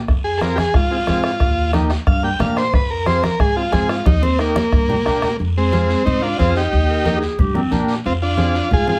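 Cumbia at a fiery, driving 181 BPM in F dorian, this clip opens with a buzzy, up-front combo organ solo bathed in plate reverb, backed by a second combo organ part, woody pizzicato upright bass, soft-beater bombo, bright congas and a raspy guiro tucked in the background. A drum fill runs from 4.1 seconds until the bombo stops at 5.4 seconds, while the chords cycle through Fm, Eb and Gm. Near 6.9 seconds a distant, growling clarinet adds a brief jazz-style line with scooped notes, and the whole band sits in a wet studio space heard from further back in the room.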